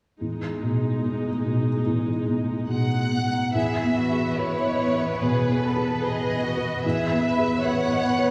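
Moving at a loose, rubato 73 BPM in 4/4, this short cut from a cinematic orchestral score in E major feels moving and hopeful. A felt-muted upright piano opens at 0.2 seconds on an Emaj7 chord, its thick felt giving a dark, intimate tone with audible action noise and short sustain, sitting up front in the mix. A close, smooth viola section enters alongside it, bowed with even vibrato as accompaniment. At 2.7 seconds a focused violin section takes the melody, bowed with vibrato. From 3.5 seconds a second violin section adds a lush, soft-attack second line while a cello section holds a low E with distant warmth. A concert hall reverb places the orchestra further back in a wet room.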